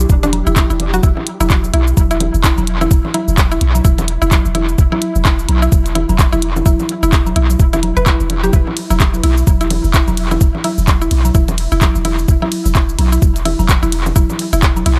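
A swung 128 BPM pulse in 4/4 drives this sparse, cool minimal techno excerpt in E minor, with a soft, tape-warm electronic kick sitting up front from 0.1 seconds. A clicky drum kit of handclaps, hi-hat, ride cymbal and shaker runs through tape echo, while overdriven congas and cowbell add a layered, echoing percussion bed. Underneath, a deep, punchy sine sub bass with a pitch-drop attack pumps with sidechain compression in the low register. A woody, round, mallet-like FM pluck carries the riff, bright and percussive with short decay, colored by chorus, cassette grit, dub echo and the same sidechain pumping. Far back in the mix, a very quiet swarming drone warbles and evolves with detuned, granular tension, and the whole echo-heavy track sits in light digital ambience.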